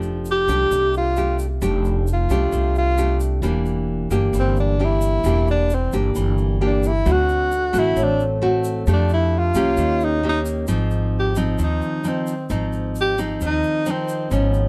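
In a dark, lightly reverberant mix, this relaxed, romantic bossa nova excerpt at 132 BPM sets a breathy, subtone tenor saxophone solo with vibrato, scooped notes and plate reverb up front over full-bodied fingerpicked nylon-string guitar, woody pizzicato upright bass and a grainy, bright egg shaker in the background, moving from F major to Ab major at 10.7 seconds.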